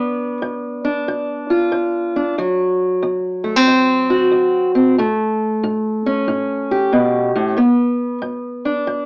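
A lo-fi home cassette recording with a narrow, AM-radio character and a modest small-room reverb frames this brief 9-second excerpt of soulful, laid-back blues. A dark, parlour-sized steel-string acoustic guitar plays fingerpicked and up front throughout, swinging at 92 BPM in 4/4 and tuned to A4 = 436 Hz. It moves through G7, D7 and A7 before coming to rest on G at 7.6 seconds.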